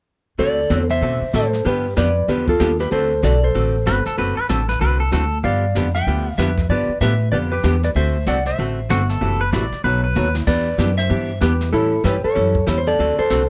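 Country western swing with a down-home, swinging mood, heard in a short cut from a longer piece. A dark, clean lap steel guitar carries the melody up front with fingered slide playing, while a picked, hollow-body archtop guitar, miked and amplified, supplies compressed accompaniment beneath it. The upright bass sits forward in the mix, woody and thumpy with plucked steel strings, and a jazz kit played with brushes adds airy, polished support from boomy kick, medium-tuned snare, hi-hat and dark cymbals, with a brief drum fill at 10.2 seconds. A bright, twangy pedal steel guitar enters as a second line at 3.9 seconds and returns at 8.9 seconds, its fingerpicked, compressed slide phrases shaped by volume swells. The harmony moves through ninth and seventh chords, passing from D9 and G9 through F#m7b5, B7, Em7 and A7 before settling on D7, all set in light reverb.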